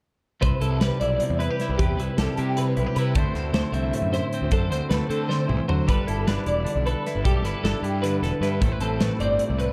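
Bright, twangy arpeggios from an up-front twelve-string electric guitar, treated with ensemble chorus and analog delay, ring high over a second clean, compressed twelve-string playing accompaniment, in this intricate, wistful math rock and midwest emo excerpt in C major, moving in 7/8 at 308 BPM in eighths. A round, fuzzy overdriven picked bass sits forward beneath them, while a modern studio drum kit with a tight kick and medium-tuned snare plays hi-hat, snare and toms, with a drum fill from 5.3 to 5.9 seconds. The chords move through Cmaj9, D9, G69 and Am9, in a dark production with a light reverb.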